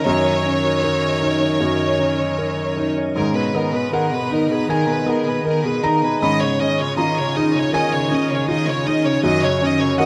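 Neoclassical piano and strings in a longing, reflective mood, this excerpt of a longer piece moves with a rubato feel. A felt-muted upright piano sits up front with its soft, intimate tone and audible action noise, while a chamber violin section carries the melody with smooth, even vibrato and a distant solo cello adds an expressive second line with portamento. Deeper in the background, a calm, organ-like pad with ensemble chorus and its own reverb holds sustained chords, and a fingerpicked Celtic harp rings out arpeggios through a slapback echo, all captured by close, detailed microphones in a large studio room.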